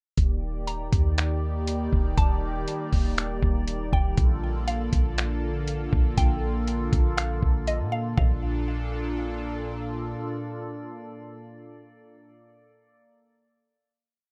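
A sparse half-time beat from a lo-fi sampler-style drum kit sits up front in this short, blissful cloud-rap piece, its pitched-down, muffled sound blending finger snaps, hi-hat, toms and a thumpy kick. A clean 808-style bass follows that kick with long, boomy sub-bass notes that slide in pitch and decay into darkness. Above them, a detuned sawtooth analog pad holds soft-edged chords through the Ebmaj7 to Bbmaj7 progression, treated with chorus and a moving notch. A woody, round mallet-like FM pluck repeats a mellow looping melody like a sampled phrase, carrying chorus, delay and plate reverb, while a faint glass-harmonics texture with drifting overtones floats far in the background. The drums drop out at 8.3 s, the pluck and bass trail off soon after, and the pad and glassy texture sustain the final chord until 12.3 s, creating a floating finish in a rough home-demo mix with light reverb.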